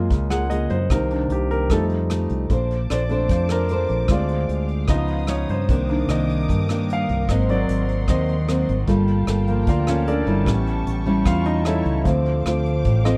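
The recording sounds dry and close, with little reverb, and this relaxed, sunny bossa nova is cut from a longer piece. A clear, intimate concert grand piano sits up front and carries a solo throughout, its deep bass and audible action noise giving it a natural presence. Beneath it, a dark nylon-string guitar with fresh strings is fingerpicked in a classical manner, while a punchy fingered electric bass, direct and amped, anchors the low end up front. A vintage brush kit, recorded in a small room with a rolled-off top and a warm tone, keeps a straight feel on hi-hat, kick and rim click. From 2.5 seconds a muted violin section adds lush, veiled sustained chords, bowed con sordino with vibrato and sitting far back in the mix. The harmony moves through rich extended chords such as Gbmaj9, Bbmaj9, Db9 and Gm9 before settling on A7 and Dm7.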